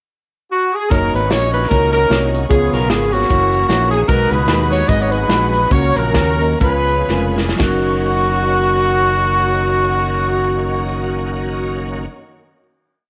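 A swung two-beat praise groove from a natural, punchy studio drum kit with bright cymbals drives this short, jubilant and soulful uptempo gospel piece, then slows down and ends with a drum fill at 7.1 seconds before the kit stops. The fingered electric bass is bright and direct, walking and running with chromatic approach notes. Over a brief pickup, a breathy alto saxophone sings jazz-style call phrases with subtone, vibrato and scooped notes, alongside a mellow, distant horn section playing roomy pop-style song phrases. In the background, a clean tine electric piano keeps a quarter-note chord rhythm, a shouting tonewheel organ holds lightly overdriven chords with key click, grace notes, chorus vibrato and slow rotary speaker, and a lush bowed string section lays down a smooth sustained pad. Light reverb and small room ambience frame the ensemble as it settles onto a final held chord from 7.6 seconds.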